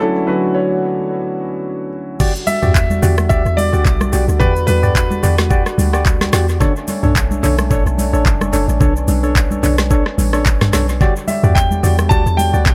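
An echo-heavy, dry-roomed amapiano excerpt in E dorian at 109 BPM with a soulful, late-night mood opens on a concert grand piano's open, long-sustained chords and a short-sustained grand piano melody over a mellow, distant French horn section. At 2.2 seconds it drops into a knocking electronic R&B kit with woody snare and metallic hats, bright background congas and hollow chorused organ stabs, joined at 2.6 seconds by a deep, round log drum bass as the music moves through Em9 and Bm9 chords, before the piano melody returns at 11.3 seconds.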